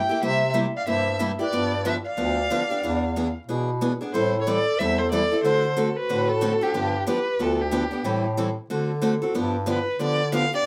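A moderate small-room reverb gives a snug, intimate setting to this charming, lively slice of acoustic string swing in the jazz manouche style, moving at 184 BPM in 4/4 with a swung feel in G mixolydian. Up front, a single bowed violin carries the melody with vibrato and expressive portamento, its tone warm. Behind it, a breathy clarinet plays a second line in the background, dark and whispered with a soft-attack subtone and scooped notes, until it drops out at 8.2 seconds. A clear bass clarinet holds the low end with light vibrato and jazz-style scoops, while a picked steel-string parlour guitar, bright and boxy with fresh strings, supplies the accompaniment from just after the start. The harmony moves through C7, G7, E7b9, Am7 and D7 before arriving on G7 at 9.4 seconds as the section begins again, cut from a longer piece.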